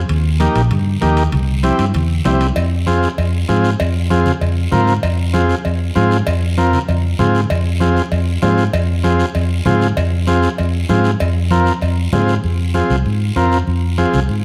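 Latin cumbia with a danceable, driving feel, led up front by a buzzy vintage combo organ with light vibrato and a dark, round fingered electric bass, while raspy guiro, thick-skinned congas played with hard hands in the background, and ringing metal-shell timbales and cowbell that stop at 12.3 seconds fill out the groove in a moderate, large studio reverb.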